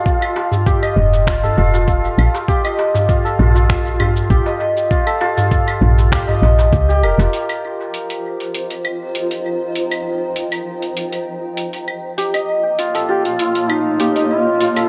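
A straight four-beat groove carries this peaceful, earthy organic downtempo piece, cut from a longer work. A gritty, tape-warm sampler-style kit of claves, finger snaps, hi-hat and shaker, muffled by low-pass filtering and trailing dub echo, sits under a thumpy electronic kick that stops at 6.9 seconds. A crisp metal-shell darbuka played with hard hands adds deep, vintage color in the background with dub echo of its own. Up front, a bright hammered santur rings through shimmering arpeggios with tape echo from the opening, while a woody, round FM bass with fast, decaying notes pumps against the beat in the first half. From 8.2 seconds a granular cloud pad spreads sustained chords across the middle and upper register, blurred and detuned, with a slow attack, a moving notch, a long release and its own sidechain pumping. At 13.1 seconds a close-miked solo duduk enters with a mellow, folk-style line and vibrato, the echo-heavy mix framed by a moderate echo chamber reverb.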